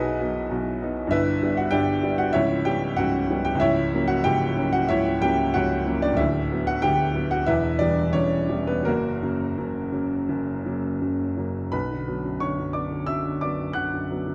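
A lone upright piano opens this short fragment of a romantic character piece for solo piano, its woody, vintage tone sitting up front with long sustain. The mood is stormy and brooding, set in B minor at a flexible 81-100 BPM in 4/4, with a rubato feel that lets the pulse breathe. The harmony moves from B through G, C#m7b5 and F#7/C#, then passes through Bm/D, Em and F#. A new passage arrives at 11.7 s on a B minor chord. The piano spans a broad range from C#1 up to F#6, with a smooth, warm tone, tuned to A4 = 442 Hz. A moderate large-studio reverb and a dark, warm production wrap the instrument in a shadowy room sound.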